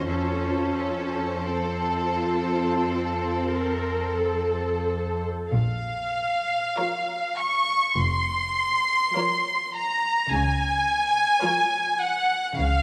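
A bowed string orchestra opens together on an F chord, with first violins up front carrying a rich, smooth, even melody in a slow, elegiac Bb minor movement at 43-54 BPM, shaped with rubato in 4/4. Beneath it, a second violin section plays a clear, focused line, while violas fill in a lush accompaniment marked by expressive vibrato and portamento. Cellos bring a bright, intense edge to the bass, and the double basses, also prominent and up front, anchor the bottom with a rich, focused weight. The harmony settles onto Bb minor at 5.5 seconds as a new section begins, then shifts to Bb minor over Db at 10.3 seconds. The players sit in a reverberant concert hall space, giving the solemn passage, cut from a longer piece, a long, enveloping decay.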